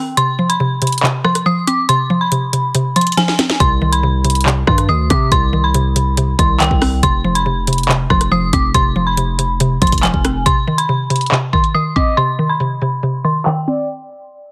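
A dark, detuned synth bell carries an eerie, inharmonic melody up front, treated with chorus, tremolo and tape echo over a woody mallet-like pluck and a knocking drill kit of sharp snare, bright hats, handclaps and rim clicks in a half-time feel. After an opening break that ends in a drum fill, a heavy, distorted 808-style bass enters at 3.6 seconds and drops out at 10.4, just before a filter sweep begins. A soft, breathy flute-like lead with vibrato slips in quietly at 12.0 seconds, all of it heard through a dry, heavily compressed, radio-like sound that heightens the menacing, ominous drill mood of this excerpt.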